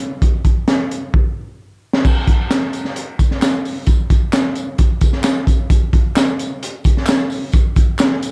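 A crunchy, gritty breakbeat kit opens this uplifting, joyful soul excerpt at 131 BPM in a straight 4/4, its punchy kick, high-tuned snare, hi-hat and dark crash cymbals sitting up front, with a drum fill from 1.1 to 2.1 seconds. At 2.1 seconds tambourine, maracas and group handclaps join in the background, close and acoustic. The drums have a saturated, rolled-off top, and a small room's moderate reverb adds to the dusky production.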